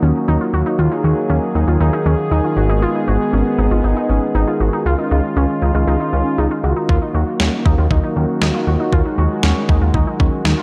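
A straight 4/4 synth-pop groove rests on a fat, detuned analog bass beneath a smooth, chorused vintage pad holding sustained chords and a warbly, lo-fi pluck playing arpeggios through tape echo, until a clean 12-bit drum machine with a thumpy kick and medium-tuned snare arrives at 6.9 s, all set in the dark, lightly reverberant production of this cool, driving excerpt from a longer piece.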